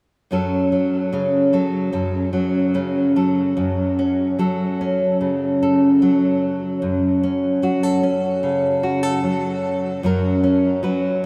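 Rubato and unhurried around 75 BPM in 4/4, this reflective, haunting fragment of solo fingerstyle folk in F# minor features a fingerpicked nylon-string guitar, full-bodied and up front with fresh strings, lightly touched by subtle chorus and analog delay, ranging from F#2 to B4 through an opening passage and a second one that begins at 3.6 seconds, settling from F#m onto F# major at 10.0 seconds inside a dreamy, reverb-soaked space whose vast ambient tail lingers.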